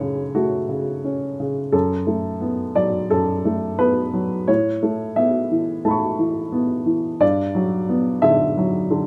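The rhythm moves freely in a rubato 4/4 around 88 BPM, giving this neoclassical minimalist piano piece an unhurried, breathing pulse. A single upright piano plays alone from 0.0 to 9.1 seconds, ranging from F#2 up to C#6, and its tone is woody and boxy, with a short sustain that lets each chord fade quickly. The harmony begins on F#m, colors it into F#madd11 at 1.7 seconds, opens onto Aadd9, and settles on Gmaj7 at 7.2 seconds. The mood is intimate and tender, with the instrument sitting up front in a moderate studio ambience. The rough home-demo mix adds to the close, personal feel of this brief passage cut from a longer piece.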